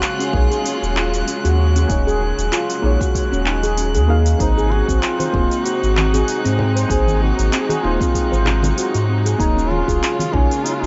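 A round, up-front sub bass anchors this hypnotic organic downtempo groove at 96 BPM in Eb dorian, with a lightly swung 16th feel over deep electronic kicks, metallic hats, cabasa and handclaps. Ringing handpan arpeggios with tape echo enter at 0.2 seconds over lush bowed strings and a dark, warbling chord stab carrying sampler grit and sidechain pumping, while a glassy texture drifts softly behind. At 4.4 seconds a mellow solo duduk takes the melody with vibrato and scooped notes as the harmony moves from Ebm11 to Ab7, and soft-handed congas join at 4.7 seconds in the background.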